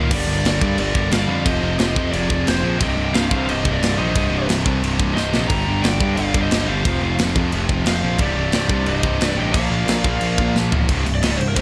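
A growly, fuzz-laden picked bass plays alongside a tight metal drum kit, its mid-forward sound with a tight kick and a rolled-off top set up front, in this dark, aggressive heavy metal excerpt at 178 BPM in C minor, with drum fills at 5.2 and 10.5 seconds. Three bright, picked distorted guitars grind out the low riff, one compressed and very quiet, another double-tracked and set in the background, while an overdriven lead from a small cranked amp carries the melody through delay. A darker distorted lead adds a second line in the background until 10.5 seconds, and the whole passage sits in light reverb over chords moving from Gm through Fm, Cm and Bb to a closing C5.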